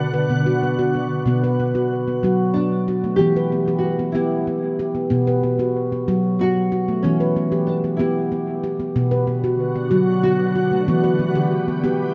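World meditative music in B minor, cut from a longer piece, moves at a hypnotic 62 BPM in 6/8 as an up-front, ringing stainless-steel handpan plays mellow arpeggios throughout, a thumb-plucked nylon-string guitar carries the melody with lush chorus and analog delay until 10.8 s, and a shimmering, detuned ambient pad with an octave-up glow holds sustained chords at the opening and again from 9.4 s, all set in a dreamy, reverb-soaked mix over a Bm, Em and B5 progression.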